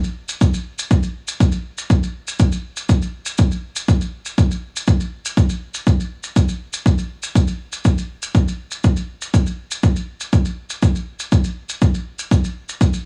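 Dry, gritty and tape-worn, this short cut from a longer techno piece sets a dark, hypnotic mood at 121 BPM in a straight 4/4. An overdriven, punchy analog kick drum sits up front from 0.4 seconds, carrying the whole track. Beneath it, grainy, band-limited maracas with a mellow, vintage acoustic tone sit low in the mix throughout.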